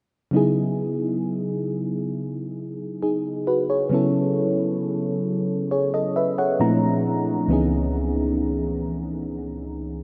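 A mellow, soft, round FM electric piano with a noise layer and chorus sits up front from 0.3 s in this longing, sensual R&B excerpt at 67 BPM in C# minor, moving through lush chords from C#m11 through A#maj9#11 and back to C#m9, adding a fill between 5.7 and 7.5 s, all soaked in a huge, dreamy reverb with a dark, muted top end.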